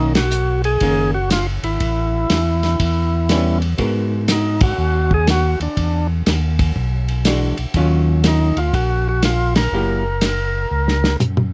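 Soul jazz organ trio in Eb minor at 121 BPM with a swung, bluesy and soulful feel, cut from a longer piece and moving through rich ninth chords from Bmaj9 to a closing Gb7b9. A percussive, lightly overdriven tonewheel organ carries the melody with key click, third harmonic percussion and slow rotary speaker, while a fat organ bass with chorus vibrato sits up front and a dark, clean hollow-body archtop guitar comps until 10.0 s. A dry, muffled soul drum kit with dark cymbals and a tight kick joins the band accents at 0.1, 4.5 and 9.5 s before a drum fill closes the clip at 10.7 s, all captured with close, detailed microphones and light reverb.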